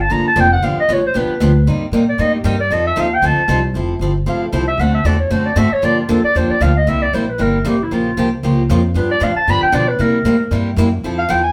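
Playful and swinging, this short acoustic string-swing passage is cut from a longer piece, with a mellow clarinet soloing up front from the start, its subtone, light vibrato and scooped notes lending a punchy yet distant, roomy jazz voice. Beneath it, an upright bass on gut strings gives a woody, dark, thumpy pizzicato pulse, while a picked steel-string acoustic guitar supplies concert-style accompaniment through a chain of seventh chords. The trio sounds like a band playing live in one room, wrapped in a short, wet studio reverb.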